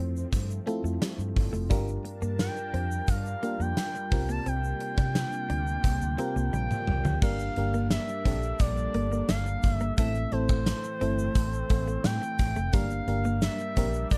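A straight 4/4 pulse at 87 BPM comes from an up-front gated 80s drum kit with a fat snare, tight kick and bright cymbals, alongside a grainy tube shaker and a round, punchy foam-muted bass, driving this dramatic, moody 1980s-style pop excerpt in G dorian, where a smooth sawtooth lead with vibrato and portamento carries the melody over glassy, bell-like FM electric piano, a swirling phased analog pad and a clean, direct-recorded electric guitar riff tucked in the background, with a drum fill from 6.5 to 7.2 seconds leading into a minor-chord passage.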